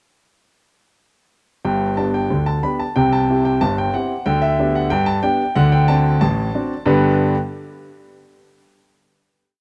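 Ragtime piano in a cheerful, lively 2/4 with a straight feel, played as a short complete piece by a solo grand piano that enters at 1.6 seconds. The clear, intimate piano sits up front with audible action noise, carrying a single-line melody over a stride bass through a simple G, C, D7 progression before settling on a final G chord at 6.9 seconds. Light reverb and a dark production give the natural-sounding instrument a close, cozy presence.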